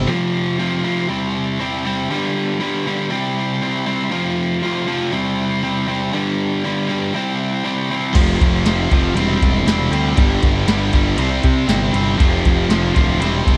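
A biting, overdriven electric guitar sits up front from the start, picking a riff through a touch of spring reverb in this dark, cathartic slice of quiet-loud alternative rock at 119 BPM in a straight 4/4. Beneath it, a very quiet tonewheel organ holds piping sustained chords with key click and a slow rotary speaker, while the harmony cycles through F, C/E, G and C. Around 8.2 seconds the music opens up: a soft vintage rhythm box arrives with a deep kick, crisp snare, ride and crash; a growly, fuzzed picked bass pushes forward; and a bright, scooped high-gain guitar joins the riff in the background. The sound is dry, with the drums and bass giving the louder passage its weight. It is cut from a longer piece, and this excerpt captures the shift from restraint to release.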